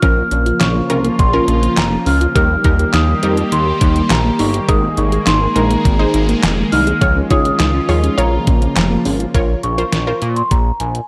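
Synth-pop at 103 BPM in Bb dorian, this short, melancholic, nocturnal excerpt moves through Bbm, Eb, Absus2 and Dbadd9 before returning to Bbm. A large celesta carries the melody high in its range, its bell-like, delicate tone ringing through an analog delay, while a bright, detuned unison pluck with a noise layer supplies accompaniment. Beneath them a sweeping resonant pad holds sustained chords with slow attack, ring modulation and chorus, and a soft round pluck plays chorused, delayed arpeggios in the background until both drop out at 9.3 s. A glossy, retro chorused synth bass built from pulse and sawtooth waves sits up front alongside a detuned 8-bit digital drum machine whose thumpy kick, snare, hi-hat and handclaps are overdriven and re-recorded in a small room. Light reverb frames a dark production, and the final stretch after 9.3 s leaves celesta, unison pluck, bass and drums to carry the cut.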